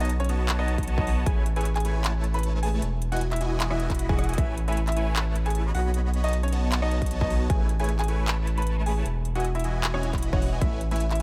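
A playful, lush future bass fragment opens with everything but the kick sounding at once: a bright, worn baby grand piano carrying the melody through tape echo, huge detuned supersaw chords shimmering under a phaser, a deep saturated sine sub bass sitting up front, and a trap kit of handclaps, rim clicks and metallic hi-hats. A layered, punchy electronic kick arrives at 0.8 seconds and returns in short bursts, giving the half-time groove its weight. The piano, supersaws and sub bass all pump against sidechain compression, so the sustained chords and low end breathe with the beat. The harmony circles through B7, Amaj7 and Emaj7 in A lydian. A drum fill at 4.2 seconds briefly jolts the pattern before the groove carries on. The mix is dry and close, with the sub bass and kick sitting heaviest beneath the brilliant piano and sawtooth chords.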